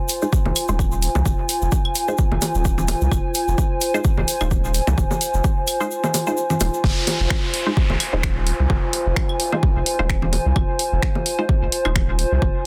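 An overdriven, punchy electronic kick sits up front in this clinical, cool minimal techno excerpt, paired with a deep, thick, saturated sub bass that pumps against it. A dry analog drum machine adds finger snaps and hi-hat with soft clipping on the snare, while a grainy acoustic tube shaker and layered, tape-warm bongos, claves and congas with dub echo fill out the swung groove. Muted, wave-folded chord stabs carry a filter pluck through phaser, 12-bit sampler grit and dub echo, set over a warbling, nostalgic, lo-fi pad with chorus, ring modulation and a slow attack that pumps under the kick. The kick drops out at 5.9 seconds before the drop lands at 6.8, where the shaker stops and an electronic downlifter sweeps through until 10.6. The mix has light reverb and a dense, heavily limited modern master.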